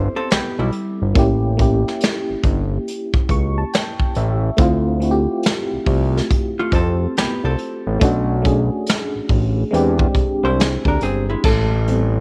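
A fat, saturated analog bass sits up front in this smooth, soulful neo-soul R&B excerpt at a slow 70 BPM with a swung sixteenth feel, moving through Am7, A7b9, Dm9, Bm9 and E7alt. A full-bodied FM electric piano with tremolo carries the accompaniment and plays a fill at 2.9 s, while a vintage brush kit with dark cymbals and a punchy kick keeps time in a small room. A clean, compressed hollow-body jazz guitar adds a second line, briefly at the start and again from 6.6 s.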